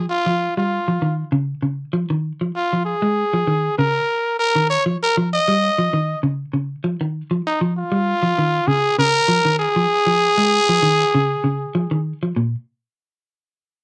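A clean, picked electric guitar opens this hypnotic, driving afrobeat excerpt at 98 BPM with up-front arpeggios on a rootless Bbm7 in Bb dorian and a light sixteenth-note swing, joined almost at once by a raspy, growling solo trumpet with light vibrato and slapback echo that sits brilliant and punchy at the front of a dry, close 1970s-style studio sound with moderate booth ambience, the trumpet stopping at 12.0 seconds and the guitar at 12.5.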